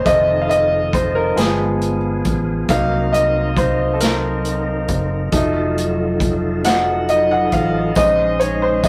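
Opening on a bright, woody upright piano out front with audible action noise, this solemn, fervent slow gospel fragment in 6/8 at 46 BPM sets the piano's solo over a smooth tonewheel organ with fast rotary speaker and chorus vibrato, a round, punchy fingered electric bass, and a distant, roomy big-band drum kit of hi-hat, punchy kick and snare, moving through F7, G7b9, Cm7b5 and F7b9 before a jingly tambourine joins in the background at 8.0 seconds on a Bbm11, all caught in a rough rehearsal-room sound with saturation and moderate reverb.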